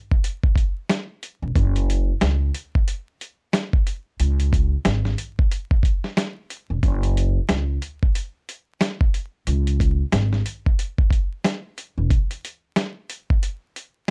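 A gritty, compressed sampler-style drum kit opens this dark, tough boom-bap hip-hop excerpt at 0.1 s, its thumpy kick, medium-tuned snare and hi-hat sitting up front at 91 BPM in 4/4 with a 16th-note swing in C# minor. At 1.4 s a woody, pizzicato upright bass with steel strings joins in the low register, playing until 12.1 s. The dry, dusky production carries a layer of vinyl crackle throughout.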